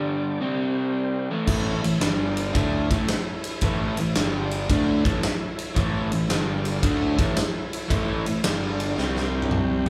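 Blues rock and southern rock power-trio fragment at 112 BPM with a swung, raunchy swagger, opening on a break where a crunchy, double-tracked overdriven guitar riff sits up front over gritty sustained tonewheel organ chords with slow rotary and chorus vibrato in the background, until at 1.5 seconds a round fuzz bass and a big acoustic drum kit with a punchy kick and bright cymbals join, closing with a drum fill at 9.0 seconds, all played live in one room with a wet, large studio reverb.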